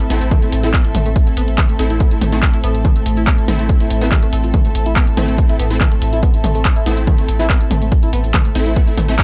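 A punchy analog kick sits up front from 0.3 s in this excerpt of driving, intense peak-time techno at 142 BPM in A minor, tuned to A4 = 437 Hz, with a dry, gritty hardware sound held on an A minor chord throughout. A round sine sub bass under a low-pass filter and a layered kit of handclaps, tape-warm hi-hats and toms carry the groove. Sidechain pumping breathes through the bass, the thick, detuned rave stabs (washed in chorus, reverb and tape echo) and the close, bowed sul tasto string section. Further back, an overdriven, screaming sawtooth lead plays a riff through lush chorus and analog delay, while a very quiet, moody ambient pad drones beneath.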